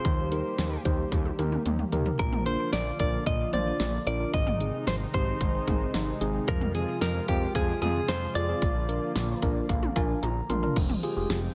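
A clean, compressed electric guitar, picked and recorded direct, carries the melody up front with a touch of delay in this melancholic, nocturnal synth-pop excerpt, moving over an Eb, Bb, Ab, Fm, Bb progression that lands on Fmadd9. Beneath it, a mellow tine electric piano plays the accompaniment, a smooth, detuned sawtooth pad with chorus holds soft-attack chords in the background, and a thick analog bass with a filter sweep anchors the low end. A punchy, produced electronic drum kit with a fat snare, metallic hi-hats, cowbell, toms and crash drives a straight 4/4 pulse with a fill at 1.1 seconds, and the electric piano takes a fill from 9.2 seconds as the guitar drops out at 9.4 seconds, all within a light reverb.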